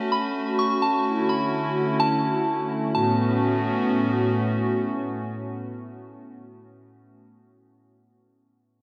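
Drenched in a cathedral-sized reverb, this short, dreamy fragment of a longer hip hop piece drifts in a floating, blissful haze with a half-time feel. A hollow, flute-like synth pad sits up front, holding sustained chords with a soft attack and a detuned, chorused shimmer that blends square, triangle and sine tones. Above it, a pure FM synth bell carries a gentle melody high in its register, each note striking quickly and then decaying with a long, warbling release that gives it a vintage glow. The bell is wrapped in chorus and a diffuse ambient delay, and it stops at 4.3 seconds while the pad lingers until 6.4 seconds. The harmony moves from an A6 chord to Dmaj9, then settles back on A6 as a new passage begins at 2.9 seconds.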